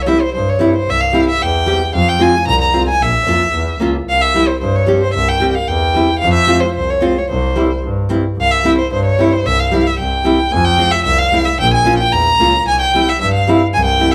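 Bittersweet yet festive, this klezmer passage, cut from a longer piece and played live in one room with moderate large-studio reverb, sets a warm, bowed violin up front singing the melody with vibrato, portamento and a smooth top, over a rich, reedy, gut-string double bass, also bowed and up front with light vibrato, and a full-bodied, fingerpicked nylon-string guitar accompaniment that moves from C through F minor and B-flat minor.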